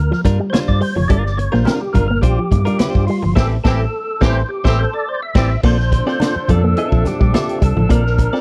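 A fat, lightly overdriven tonewheel organ with key click, chorus vibrato and slow rotary speaker takes the solo until 5.6 seconds in this hypnotic, sly funk excerpt at 106 BPM, over a dark, round hollow-body bass, a punchy vintage drum kit, a twangy clean direct guitar with warbly pitch drift, a bright envelope-filtered guitar riff, distant low-tuned congas and a clear horn section that joins at 3.4 seconds for a band accent, all in a dry, close 1970s-style room.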